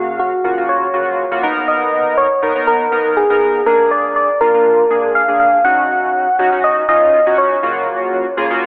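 A gentle, round FM synth lead with chorus and vibrato carries the melody over a glossy, detuned polysynth bed of evolving pulse and sawtooth tones in this driving, confident dance-pop fragment, where a lush hall reverb and a worn, warbling cassette-tape quality with a thin telephone tint give the whole short passage a retro sheen.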